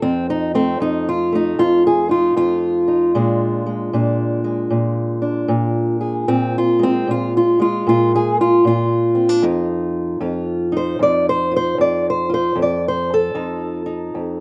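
Gritty and laid-back, this short excerpt of acoustic country blues swings easily at 76 BPM in 4/4, with a lone fingerpicked, ladder-braced acoustic guitar up front, its dark, woody, boxy tone and old strings moving from F7 to Bb7 at 3.2 seconds and back to F7 at 9.4 seconds, tuned slightly below standard pitch and heard dry in the open air.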